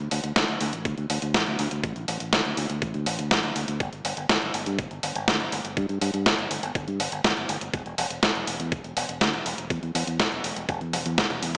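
Steeped in a lush hall reverb, this dreamy, small-speaker mix is cut from a longer piece. It is an italo disco track at 122 BPM in a straight 4/4, with a bittersweet yet danceable mood. A fingered electric bass opens at 0.0 seconds, sounding warm and direct through its amp as it moves between E1 and G2, trailed by a diffuse ambient delay. Up front sits a clean 12-bit digital drum machine with a sampler-style, tape-tinged character, playing hi-hat, a medium-tuned snare and toms, and it was re-recorded in a large room. A thumpy electronic kick drum with the same roomy, sampler-style tone sits lower in the mix. Near the end, the drums play a fill starting at 10.9 seconds.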